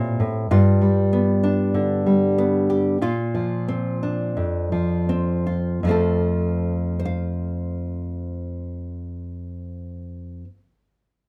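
A wet small-room reverb surrounds this nostalgic folk passage in F major, cut from a longer piece, where an up-front, deep-toned nylon-string guitar fingerpicks a warm accompaniment at 77-99 BPM in straight 4/4, slowing from 0.5 to 5.8 s as it moves through Am7, G7 and Bbadd9 before settling on F.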